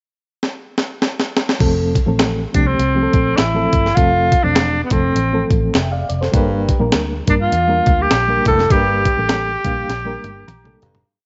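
Lightly reverberant and dulled in the highs, this short, joyful piece of uptempo 1960s-style soul swings along in 4/4. A gritty, pitched-up sampler-style drum kit sits up front and opens with a fill at 0.4 seconds before settling into a backbeat soul groove with a thumpy kick, medium-tuned snare, hi-hat, crash and toms. A dark, round, foam-muted fingered electric bass plays a syncopated, melodic line under a worn, reedy electric piano. The piano adds fast tremolo, rhythmic drop-2 chords, grace notes and short fills, and sounds slightly out of tune through its built-in speakers. Close, very quiet finger snaps keep time, and at 2.5 seconds a breathy, whispered tenor saxophone takes the up-front solo with intimate, motif-based call phrases, a soft attack and vibrato. From 6.3 seconds, as the harmony moves from F to Gm, a clear baritone saxophone adds low, scooped subtone punctuation before the piece ends on a closing drum fill and a fade-out.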